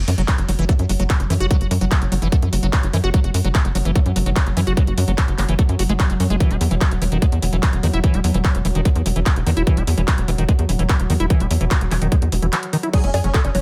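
A tight, up-front electronic kick drives this psychedelic, alien stretch of psychedelic trance at 147 BPM, joined by a tight, saturated sequencer bass, a squelchy, resonant acid bass riff with chorus, delay and sidechain pumping, and an overdriven techno kit of bongos, handclaps, hi-hat and crash. An evolving, warbling wavetable pad holds sustained chords in the background with chorus and built-in reverb, moving from an open start to Esus2 at 6.4 seconds. After a brief break at 12.5 seconds, a detuned supersaw stab with phaser and tape echo enters at 12.9 seconds on an F#5 chord, in a dry mix.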